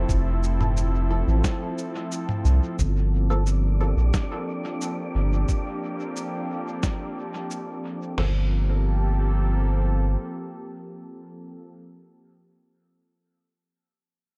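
Deep and hazy, this ambient dub fragment in G dorian moves at 89 BPM from Fmaj7 to Gm11 in an echo-heavy space, where a round, up-front analog bass anchors the low end while a warbling detuned pad carries sustained chords, nasal filtered chord stabs sit in the background with phaser, chorus, cassette tape and dub echo, two muffled lo-fi sampler-style drum kits bring a thumpy kick, fat snare, toms, crash and shaker through studio reverb, and an airy wind-like tuned noise texture breathes in from 3.5 s to 8.2 s.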